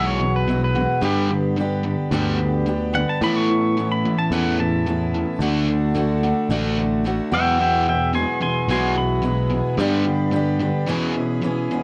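Twangy pedal steel guitar takes the lead at the front of the mix, played clean with fingerpicks and slide, its compressed tone shaped by volume swells as it solos through this roughly 12-second cut from a longer rock piece. Underneath, a biting overdriven guitar, double-tracked, carries the riff, while a full-bodied dreadnought steel-string acoustic guitar is picked as accompaniment. A round, direct picked electric bass sits up front holding the low end, and a reedy, breathing pedal harmonium sustains mellow, dark chords in the background. The tempo is a straight 110 BPM in 4/4, moving through Eadd9, G, Aadd9 and D before settling on E6, with a jangly, nostalgic mood. Light reverb frames a dry, close sound in the manner of a 1970s studio, and the steel and bass drop out just before 11 seconds as the other parts carry on to the end.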